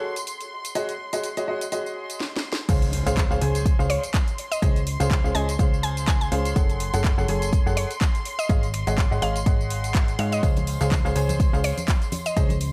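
Piano house at 124 BPM in Db major, joyful and euphoric: a bright, slightly detuned upright piano riff with audible action noise and dub echo rides over rich, bowed violin-section chords, both pumping with sidechain, while an overdriven house kit of cracking snare, handclaps, finger snaps, hi-hat, tambourine and crash fills into a drop at 2.7 seconds that brings a punchy overdriven electronic kick up front, a funky, plucky sawtooth analog bass that also pumps, a very quiet impact and soon a round, woody FM synth-pluck melody with chorus and dub echo, before tambourine and congas slip in close and dry in the background at 10.4 seconds in this excerpt cut from a longer piece.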